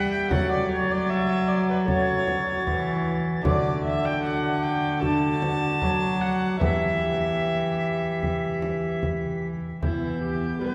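This short excerpt of a Renaissance-style consort dance opens at once with the strings, recorder, trombone and lute in a courtly, solemn mood, moving at a stately 76 BPM in straight 4/4 in E dorian. An airy soprano recorder carries the melody with gentle chiff and vibrato, though it sits in the background. A gut-strung viola sings a reedy second line up front, and a rich, bowed cello with light vibrato anchors the bass. A clear, close-miked trombone and a bright, delicate fingerpicked lute with doubled gut strings fill out the accompaniment. A deep frame drum played with soft hands joins at 0.3 seconds, as the harmony moves from F#m to D and then Em. A long church reverb places the group further back in a resonant, stone-like space.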